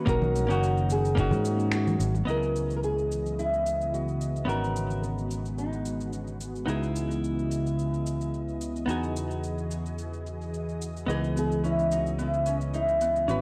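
Heard through worn, warbling cassette tape with drifting pitch and a small-room ambience, this wistful sunset chillout excerpt drifts on a lightly swung groove over minor-leaning seventh and ninth chords. A dusky, thumb-plucked flamenco guitar carries the melody through tape echo, dropping out midway and returning near the close, while a clean, compressed hollow-body jazz guitar accompanies with delay, a mellow, chorused pad holds airy chords in the background, and an up-front fingered electric bass anchors the low end. Electronic shaker and finger snaps tick throughout, a gritty, overdriven kick thumps only until 1.3 s, bright, damped congas sit in the background until 2.2 s, and a ringing Celtic harp enters with delayed arpeggios at 11.1 s.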